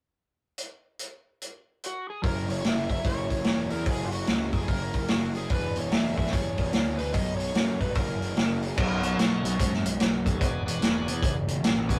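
A gritty, raunchy blues rock and southern rock excerpt with a swung feel opens on an up-front vintage drum kit with dark cymbals and a punchy kick, soon joined by a fingered, overdriven slide guitar melody, and at 2.2 s by a double-tracked crunchy guitar riff tucked in the background and a bright, fuzz-laden picked bass, before a full, shouting tonewheel organ with key click and slow rotary speaker adds sustained chords at 8.8 s, heard in a rough rehearsal-room recording with light reverb and saturation.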